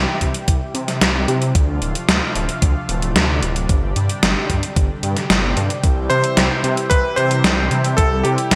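Romantic and nostalgic, this short synthwave excerpt in C major moves at a straight 112 BPM as a silky analog string pad with ensemble chorus and sidechain pumping holds sustained chords over a thick, detuned saw bass with chorus, while a thumpy electronic kick and a gated 80s digital drum machine with gated-reverb snare and hi-hat enter at 0.2 seconds, and a bright, cutting electric grand piano with digital delay joins at 6.1 seconds with a melody, all set in a lush hall reverb with bright 1980s-style digital production.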